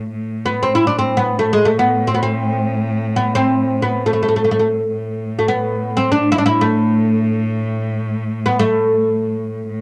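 A woody, plectrum-plucked fretless oud with double strings sits up front, carrying a hypnotic, longing melody between G#3 and E4 from 0.5 s in this free-time Arabic maqam excerpt in A minor, tuned to A4 = 442 Hz. Beneath it, a single bowed cello, clear and focused with vibrato, holds a close drone on A2 from the first moment, set lower in the balance. Both parts carry the soft wear of cassette tape, and a short, wet booth ambience surrounds the home recording.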